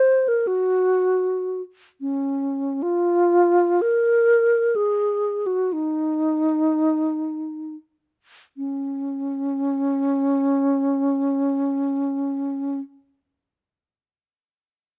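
A solo alto flute opens the recording, playing an expressive, lyrical line in free time in D-flat major. The mood is nostalgic, and the tone is airy and warm, shaped by vibrato and tongued notes that sit up front in a close, detailed sound with little reverb. The melody stays within a compact range from Db4 to C5. From 0.9 seconds to 8.6 seconds the playing slows, easing into a new passage that runs to about 12.5 seconds. Cut from a longer classical piece, this fragment lasts just under 13 seconds.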